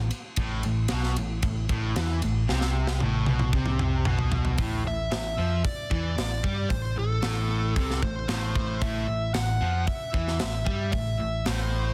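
A dark, round, punchy picked electric bass sits up front in this heavy, menacing hard rock excerpt in A minor at 114 BPM, anchoring the low end beneath a riff from a crunchy overdriven guitar in the background and a bright, distorted electric guitar, all over an A minor chord. A tight acoustic metal drum kit with a medium-tuned snare and rolled-off top plays hi-hat, kick, ride, snare and toms, with a fill from 2.5 to 4.6 seconds. At 4.9 seconds a bluesy lead guitar with distortion and tape echo takes the melody, framed by light small-room reverb and a dense, heavily limited modern master.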